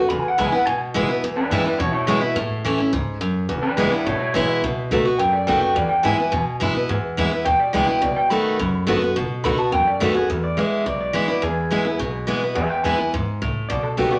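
A straight 4/4 at 212 BPM sets this rowdy, upbeat rockabilly excerpt in E major in motion, opening with a clean electric guitar solo over the first 1.2 seconds. A bright, full-bodied picked steel-string acoustic guitar sits up front with audible finger squeak, while a twangy, slightly broken-up electric guitar from a small old amp carries the melody through spring reverb, and a woody, thumpy pizzicato upright bass with gut strings sits lower in the mix. The whole excerpt is bathed in a wet large-studio reverb with tape saturation as the chords move between E, A and B7, landing back on E at 10.3 seconds.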